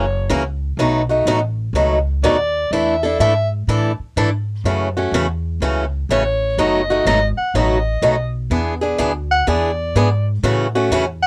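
A warm soprano saxophone, picked swing-style acoustic guitar and upright bass all start together at the outset of this playful, lively excerpt of acoustic string swing in the jazz manouche tradition, moving at 124 BPM in 4/4 with a swung eighth-note feel. The soprano saxophone takes a solo through the whole passage in a jazz style, with subtone, a soft attack, scooped notes, vibrato and a smooth top. Beneath it, the acoustic guitar accompanies with a bright, boxy picked sound, finger squeak audible on the strings, and it stops at 11.0 seconds just before the others. The upright bass plays pizzicato on gut strings, woody, dark and thumpy, and sits up front alongside the other two. The chords pass through F#7, B7, E7sus4, F#m7, B7/F#, E7 and settle on A6. The guitar and saxophone carry a cassette tape character, and the dry, close sound of a home cassette recording gives the trio an intimate, informal feel.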